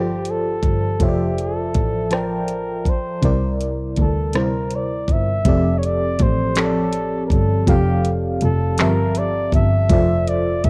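Sensual and intimate, this short cut from a longer piece is a slow R&B groove in 6/8 at 54 BPM, set in F major with a straight feel. A breathy flugelhorn carries the melody in a mellow, jazz-style solo, with light vibrato, scooped notes and a smooth top, colored by a cassette tape effect. Beneath it, an up-front FM electric piano with tremolo gives full-bodied, dark chords that strike quickly and decay over a noise layer, also treated with cassette tape. A single bowed double bass adds a rich, even low line with its own light vibrato. The electronic, produced drum kit enters at 0.3 seconds with a knocking kick, metallic hi-hat, rim click and handclaps, re-recorded in a small room, sitting up front with tape coloring. The harmony moves from F69 through Bbmaj9#11/F and C9, returns to F69 at 5.5 seconds for the second section, and reaches Dm9/F near the close, all in a dry, home-recorded cassette sound.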